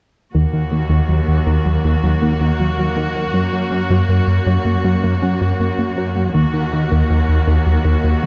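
A straight 4/4 pulse at 80 BPM drives this tense, vast cinematic passage in Eb minor, cut from a longer piece and shaped as a single build-up from 0.3 to 8.3 seconds. A smooth, nasal synth bass carries the riff and sits most prominently in the mix, its detuned sawtooth and square tones sustained with a touch of vibrato. Alongside it, a rich, even cello section holds the low bass line. A clear, focused viola section adds lush bowed accompaniment with vibrato, while a woody, wave-folded pluck in the background plays dark, percussive arpeggios colored by chorus, digital delay, ring modulation and a filter sweep. The harmony moves from Eb minor to Gb and back to Eb minor, and light reverb with close, detailed microphones keeps the parts present and distinct.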